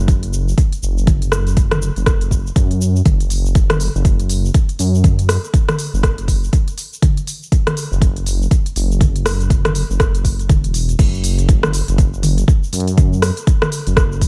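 A deep, up-front electronic kick drives this afro house excerpt at 121 BPM in 4/4, its studio reverb adding a touch of room to a produced, swung groove. Beneath it, a dark detuned saw bass rumbles and beats between E1 and F#2, sustained with a fast attack and pumping against the sidechain, while an afro-pop drum kit of crash, smooth hi-hats, rim clicks, shaker and toms fills in the pattern. The driving mood holds steady until a drop lands at 11.0 seconds and carries through to the end at 14.3 seconds.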